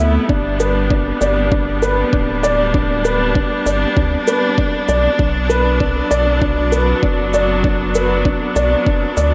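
A dark, mellow baby grand piano riff with audible action noise, low-pass filtering and delay opens this melancholic, moving piano and strings electronica excerpt, alongside lush, bowed string chords with vibrato and a round analog bass, both pumping from sidechain, before a deep, layered electronic kick joins at 0.3 seconds and a shaker at 0.6 seconds, set in a light reverb as the harmony moves from G to Bm.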